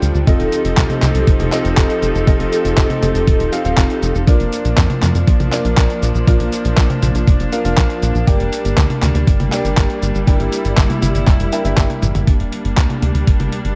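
A thumpy electronic kick drum drives this nostalgic, danceable italo disco excerpt at 120 BPM in 4/4 with a straight feel, set in G minor and tuned to A4 = 441 Hz. Beneath it, a tight, punchy sequencer bass built from detuned sawtooth, square and triangle tones adds a dark, driving low end with fast-attack filter plucks and a touch of tube saturation. A gritty, compressed soul sampler-style kit, overdriven and re-recorded in a small room, fills in cabasa, handclaps, hi-hat and toms, with a drum fill at 11.9 seconds. A clear, bowed studio string section holds sustained chords with light vibrato and a biting yet smooth top, while a bright, vintage grand piano with long sustain plays stabs through a digital delay before stopping at 12.2 seconds. The harmony moves through F7, Bb and Gm. The piece shifts into a new section at 12.3 seconds, and light reverb gives the whole a dark, nostalgic sheen.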